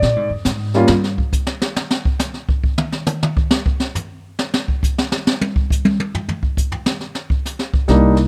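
A swinging, playful jazz piano trio opens together on a Bb5 chord at 137 BPM in 4/4, with the eighth notes swung and a Bb mixolydian color. The concert grand sounds intimate and close, with audible action noise and a deep lower register, while the pizzicato upright bass is woody and dark on steel strings. After the piano stops at 0.9 seconds and the bass shortly after, the brush kit takes a solo over open time until 7.9 seconds. The drums work through brushed snare, hi-hat, a boomy kick, a high-tuned snare and toms, and sound natural and up front in a studio room. Piano and bass return briefly at 7.9 seconds, all under light reverb, in this section cut from a longer piece.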